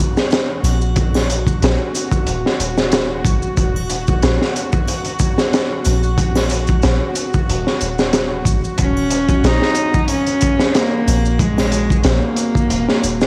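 Brooding and hypnotic, this trip hop excerpt sits on a crunchy breakbeat kit whose punchy kick, high-tuned snare and hi-hat come through gritty and saturated, with a rolled-off top and a subtle swing, placed up front. Beneath it, a tense, nasal, bowed-like drone glows with its own reverb and vibrato, sustained and string-like from the first moment. Maracas and triangle tinkle quietly in the background, and from 0.6 seconds a soft, round 808-style bass adds deep, decaying sine tones warmed by tube saturation. At 8.8 seconds a single bowed cello enters, expressive and sliding with vibrato and portamento, colored by cassette tape and tape echo. The excerpt holds on one minor chord and carries the intimate, dry character of a home cassette recording, with vinyl crackle.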